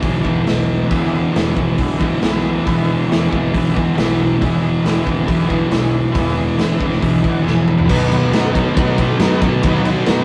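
Rowdy and swaggering, this garage rock cut at 138 BPM in E major drives a thick, dark, double-tracked fuzz guitar riff up front over a round, very quiet fuzz bass and a raw, gritty drum kit with a punchy kick and pumping room sound. A buzzy combo organ with heavy vibrato holds sustained chords in the background from 0.9 seconds, adding a fill that a drum fill soon joins, pushing the music from E to B at 7.9 seconds. The rough rehearsal-room tape sound and moderate reverb give it a saturated, lo-fi edge, and the piece is cut from a longer performance.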